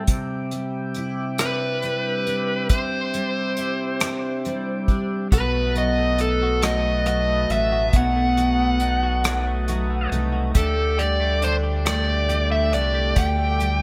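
A dark, overdriven lead guitar carries the melody from 1.4 seconds through digital delay in this dramatic, melancholic six-eight pop ballad, cut from a longer piece. Beneath it, a full-bodied, double-tracked steel-string acoustic guitar picks the accompaniment, a flute-like tonewheel organ on slow rotary speaker sustains chords, and an airy unplugged drum kit played with bundle sticks sits up front with hi-hat, a punchy kick, rim clicks and gated reverb. At 5.3 seconds a deep, evolving analog bass with a sawtooth, sine and ring-modulated tone enters alongside a clean, scooped electric guitar recorded direct, whose background arpeggios carry analog chorus and delay, within a bright 1980s-style digital production with light reverb.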